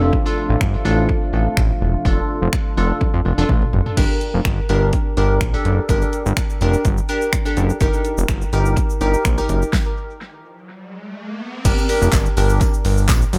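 A glassy, crystalline wavetable pluck with chorus, tape echo and sidechain pumping opens this confident, bittersweet dance-pop excerpt over a fat, detuned sawtooth bass and a mellow, warbling vintage pad that sits in the background until it drops out at 3.9 seconds. A punchy deep house kit with a fat snare, hi-hat, shaker, snaps and handclaps drives the straight groove up front, and a drum fill leads into the next section. After a stop at 9.7 seconds an electronic riser builds the tension, and a jingly, very quiet tambourine joins at 11.8 seconds in a dry, echo-heavy mix.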